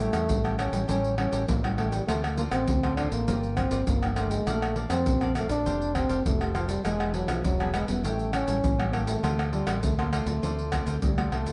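Yearning and bittersweet, this 11.5-second samba and choro fragment in D minor at 101 BPM sets a breathy, whispered trombone melody over a punchy fingered electric bass, an up-front percussion bed of egg shaker, pandeiro, tamborim and deep surdo, and a background of crisp picked cavaquinho and full-bodied fingerpicked nylon-string guitar, moving from A7 through Dm7, Gm7, Bbmaj7, Fadd9 and E7, then A7 and back to Dm7, in a dark production with a large studio reverb.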